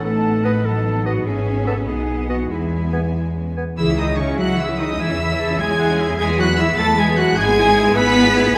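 A lush, reverberant scoring-stage sound frames this urgent, dramatic romantic orchestral excerpt in 6/8, where a focused chamber violin section carries the high melody over a prominent cello section and double bass section, a smooth viola section, very quiet French horn chords and ringing harp arpeggios, while an airy flute section, a background violin section, a bright oboe and a mellow clarinet add second lines, a bassoon joins the accompaniment until 3.6 s, and distant trumpet section stabs enter at 3.8 s.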